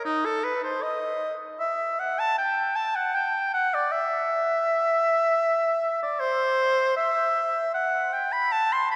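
Flowing in a free rubato around 78 BPM in 4/4, this serene, radiant baroque-style fantasia in E minor is carried entirely by a solo oboe, tuned to A4 = 441 Hz and ranging from D#4 to C6. The oboe sits up front with a clear tone, light vibrato and soft attacks in a classical manner. Long church reverb of 3.6 seconds and a dark production surround it across this 9-second passage cut from a longer piece.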